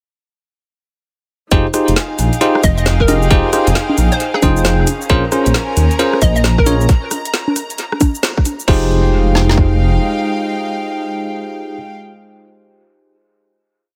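Bouncy and moody, this two-step UK garage piece in F minor runs at 134 BPM with a swung 16th feel: a tight kick and woody snare drive beneath a second kit's skipping metallic hats, rims, shaker, congas and crash, a dark detuned saw bass rumbles and pumps through a syncopated line, and bell-like tine electric piano stabs ring with dub echo over soft, intimate chamber strings shifting between Fm9 and Bbm9, while a hollow square pluck adds short chorused phrases from 2.6 seconds and a distant violin section holds a gritty high note from 5.1 seconds before a band accent at 8.2 seconds leads into the final chord.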